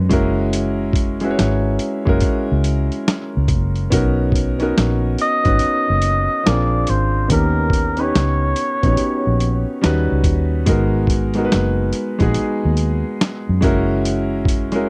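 A concert grand piano and a muted fingered electric bass open this soulful, smooth neo-soul R&B clip together, joined almost at once by a gritty, sampler-style boom bap kit of hi-hat, thumpy kick and medium-tuned snare. The groove is slow and laid back, with a swung sixteenth-note feel. The piano sounds natural with deep lows, while the bass is dark, round and amped, and the drums come across compressed, pitched down and tape-warm, as if re-recorded in a small room. At 5.2 seconds a cup-muted trumpet takes a short jazz-style solo until 9.7 seconds, its veiled, breathy tone carrying light vibrato and scooped notes. The harmony moves through lush extended chords, from F#9 to Bmaj9 and A#9, then to altered D# dominants and G#m9 before returning to F#9. Every part sits up front in a dry, close 1970s-style studio sound with little reverb.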